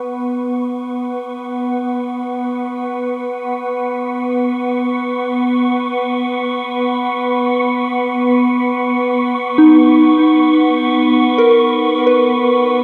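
The recording sits in a vast, echoing space, bathed in a wet cathedral reverb whose long tail hangs over every held note. This luminous, weightless ambient passage, cut from a longer piece, floats in free time. A calm, organ-like drone holds steady on a detuned unison sine tone from the very start, with its slow attack and long release thickened by ensemble chorus. Above it, a dark, breathy, wind-like noise texture fades in gradually across the whole passage. The harmony settles on Bsus2 and shifts to Bmaj9 at 8.5 seconds. At 9.6 seconds a soft, pure synth bell steps up front with gentle arpeggios, its fast attack decaying into chorus and a diffuse ambient delay.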